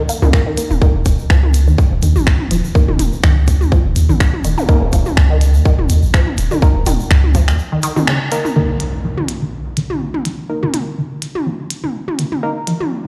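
This minimal techno excerpt runs at 124 BPM in 4/4 with a light swing on the sixteenths, and its mood is hypnotic and clinical. A squelchy, resonant blip pluck carries the riff, detuned and ring-modulated, with phaser, analog chorus, delay and sidechain pumping, while a muted dub chord stab, coloured by chorus and tape echo, moves under a filter sweep. The low end rests on a tight, overdriven kick set up front and a deep, punchy sine sub bass with a pitch-drop attack and sidechain pumping, both dropping out at 7.6 seconds for a short break with a band accent at 8.1 seconds. Around them, a clicky, overdriven kit of finger snaps and hi-hats, electronic toms with tape echo and a grainy, distant egg shaker keep the groove busy. At 8.6 seconds an impact and riser open the second section, where the shaker has stopped and a filter sweep works over the synth arpeggio, all played on a big sound system in a bare room with large studio reverb.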